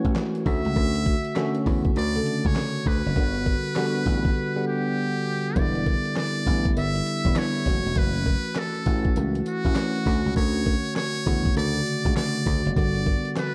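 Bouncy and slick, this new jack swing R&B excerpt rides a swung sixteenth-note groove built on a gritty, compressed sampler-style drum kit with thumpy kick, fat snare, hi-hat, handclaps and tambourine, a very quiet dry cowbell, a punchy foam-muted slap bass, and a bell-like tine electric piano coloured by analog chorus, while a buzzy, close-miked trumpet with a metal mute and light vibrato enters on the melody at 0.5 seconds over seventh chords moving from Dmaj7 and Gmaj7 into Em7 at 5.6 seconds and then F#m7, all set in a dark production with light reverb and digital ambience.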